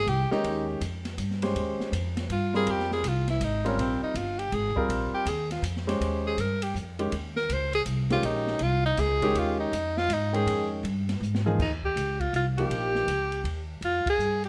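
A swung waltz feel drives this intense, hypnotic modal jazz excerpt, with a woody, thumpy pizzicato upright bass and a dark, smooth drum kit with a punchy kick and high-tuned snare supporting a warm, polished grand piano over suspended chords. A clear tenor saxophone, touched with vibrato and subtone, solos up front, and a drum fill at 11.2 seconds leads into the next section. A bright, breathy alto saxophone then takes the melody at 11.6 seconds, and the band accents together at 14.0 seconds, all captured with close, detailed microphones and light reverb.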